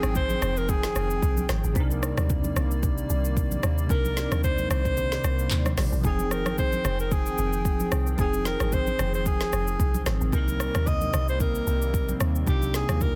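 A breathy, whispered alto saxophone with tape echo carries the melody over a late-night, soulful amapiano groove at 112 BPM in F dorian, joined by a bell-like tine electric piano with ensemble chorus, a hollow, flute-like pad pumping under sidechain, a deep, round log drum bass, a deep house kit with a woody, softly clipped snare whose kick drops out from 5.0 to 6.0 seconds, very quiet close congas, and a barely audible downlifter that ends at 1.8 seconds, all in a dense, heavily limited modern master.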